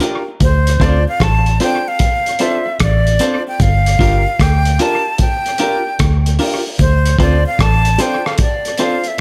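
Hypnotic and laid-back, this short roots reggae excerpt moves at 75 BPM in 4/4 with a swung sixteenth feel, sitting in D minor and cycling from Dm7 to Gm7 and back. A muffled, cloth-damped drum kit with a tight kick, gritty hi-hat and rim click sits up front from the start, its lo-fi small-room sound touched with dub echo. A dark, foam-muted fingered electric bass enters at 0.4 seconds with a round, punchy tone and anchors the low end until 8.0 seconds. A slightly broken-up, picked electric guitar supplies compressed accompaniment through dub echo and plate reverb, while a polished grand piano adds short, present stabs in the same plate space. A breathy, bright jazz flute carries the melody close-miked and expressive with vibrato and a soft attack, trailing dub echo, and low-tuned bongos slip in briefly at 8.0 seconds under soft hands.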